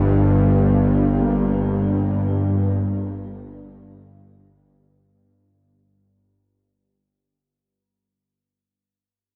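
A tense, detuned, ring-modulated bowed-like drone sits up front in the low register in this ominous, dark ambient excerpt in free time and G minor, stopping at 5.2 seconds, while a warm baby grand piano fades out over the opening five seconds as it plays soft arpeggios in the background through diffuse delay and shimmer reverb until 7.8 seconds, all set in a cavernous cathedral reverb with a cassette-tape grain.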